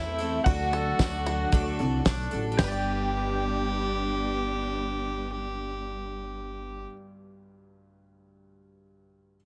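Indie folk at 113 BPM in G major, uplifting and nostalgic, where a twangy, slightly broken-up electric guitar with tremolo and plate reverb carries the melody over a reedy fiddle second line, a shimmering octave-doubled twelve-string, fingerpicked banjo arpeggios with tape echo, dark bowed chamber strings with portamento, a woody pizzicato upright bass and a very quiet, slightly detuned upright piano, while a cloth-damped, thuddy drum kit with a fat snare plays from 0.5 to 2.7 s alongside a jingly tambourine in the background, all in a heavily compressed radio sound with light reverb.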